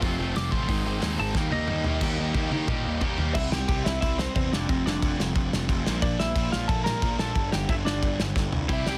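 An energetic, upbeat punk rock passage cut from a longer piece, driving in a straight 4/4 feel that opens in half time while a lead electric guitar solo takes the spotlight. A loose indie drum kit sits up front with a punchy kick, a medium-tuned snare and dark cymbals in a small-room sound, pushing through fills at 1.4 seconds and again near the close. Underneath, a fuzz-laden picked electric bass gives a warm, punchy low end, and a sludgy, dark distorted guitar grinds out a riff in the background for the whole stretch. A crunchy, bright overdriven guitar riffs up front at the start, stopping at 3.3 seconds and returning briefly at the very end. The lightly driven lead guitar, slightly broken-up and compressed with a touch of delay, carries the melody from 0.4 seconds onward. The mix is dry, dense and heavily limited, with a modern finish.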